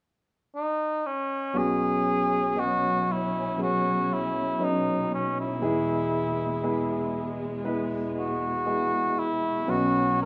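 A mellow cor anglais carries the solo melody with light vibrato and tape echo from 0.6 s in this heartfelt, emotional slow pop excerpt at 59 BPM in B major, joined at 1.5 s by an up-front concert grand piano with deep bass and long sustain and by lush, woody bowed strings holding chords over a Bsus2-to-E progression, all in a rough home demo mix with a wet studio reverb.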